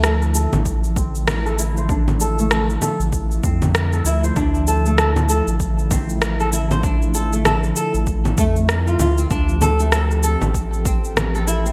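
A swung sixteenth-note groove of up-front rim clicks, shaker and congas in gated reverb, joined at 0.7 seconds by a punchy, overdriven electronic kick, carries this meditative organic downtempo fragment, where a boxy, fingerpicked flamenco guitar with audible finger squeak plays arpeggios through lush chorus, delay and a low-pass filter sweep, over a round, deep analog bass and an airy, breathy, detuned pad that both pump with sidechain, all within a bright 1980s-style digital production and a chord change at 9.3 seconds.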